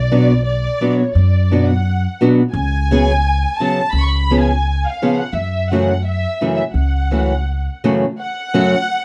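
Mariachi-flavoured Mexican folk in F# minor at 86 BPM, this passionate, dramatic excerpt sets a dark, lush bowed violin section singing a vibrato-rich melody with a smooth top over fingerpicked nylon-string guitar and a thumpy pizzicato upright bass, both up front in a short, wet studio reverb, as the chords move from Bm through C#7sus4 and C#7 to F#m7 before the bass stops at 7.7 seconds and the violins carry on to 9.0 seconds.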